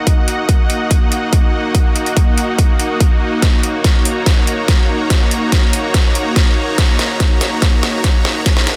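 A punchy, overdriven electronic kick sits up front through this menacing, aggressive half-time wobble dubstep build-up, with the dubstep kit's deep snare and metallic hats also driven hard and tucked into a small-room ambience. A lush, bright supersaw pad of detuned sawtooth unison voices with a sub octave holds sustained chords, its slow attack and long release pumping against the sidechain beneath a low-pass filter. From 3.4 seconds a drum fill pushes the tension onward in this dense, heavily limited excerpt, wrapped in light digital reverb.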